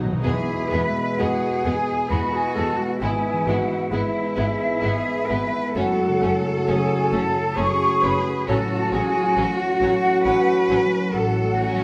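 In a rubato three-four lilt, this serene, tender slow classical movement lets a very quiet, distant violin section carry the melody while a second violin section, an airy flute ensemble with crisp attack and a mellow, roomy clarinet add second lines, a lush viola section accompanies, a ringing, thumb-plucked concert harp spins arpeggios in the background, a French horn section and a dark trombone section hold sustained chords, and an intense cello section with a focused double bass section anchors the bass, the orchestra set in a wet recital hall reverb as the harmony moves from E to F#m.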